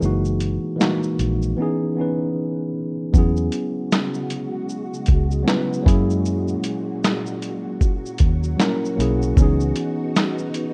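Reflective and melancholic, this lo-fi hip hop excerpt moves at an unhurried 77 BPM in 4/4 with a 16th-note swing, tuned slightly sharp to A4 = 441 Hz. A compressed, pitched-down sampler drum kit sits up front with a thumpy kick, a medium-tuned snare, hi-hat, shaker and handclaps, its muffled sound re-recorded in a large room. Beside it, a dark, foam-muted fingered electric bass gives round, punchy low notes until 9.7 s, while a worn, slightly out-of-tune tine electric piano carries the chords through a cassette tape character and built-in speakers. From 3.6 s a soft string machine enters quietly, its silky pulse and sawtooth tones swelling in with a slow attack and long release, thickened by ensemble chorus. The harmony drifts from F#13 to C#m9 around a break at 1.6 s, then through E69 and F#9 before returning to C#m9, all in a rough home-demo mix with digital ambience.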